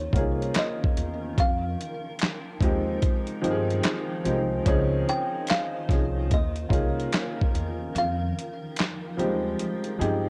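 Lo-fi hip hop at 73 BPM in F minor with a swung 16th feel, reflective and hazy, this short cut from a longer piece drifts through Eb9sus4, Fm9 and Dbmaj9 chords under a worn, warbling tape sheen. An intimate upright piano with audible action noise sits up front beside a gritty, overdriven sampler-style kit of thumpy kick, fat snare, hi-hat and handclaps, while a woody pizzicato upright bass holds the low end and very quiet, close finger snaps enter at 0.5 seconds. A hollow, thumbnail-plucked kalimba carries the melody through tape echo, a blurred, evolving granular pad glows softly behind in its own reverb, and the kick drops out from 7.9 seconds.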